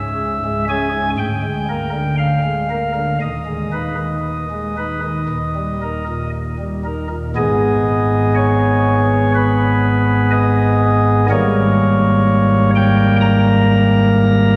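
Classical chorale-style music for solo pipe organ, grave and dark in G# minor at a rubato 57-64 BPM in 4/4, its soft flute stops sitting up front with a warm baroque voicing and a touch of chiff, moving through C#m, A#7/D, G#m/D# and D# before reaching G#m at 7.4 seconds and a closing Gdim/G# at 11.3 seconds, set in a wet church reverb with a 3.3-second decay and cut from a longer piece.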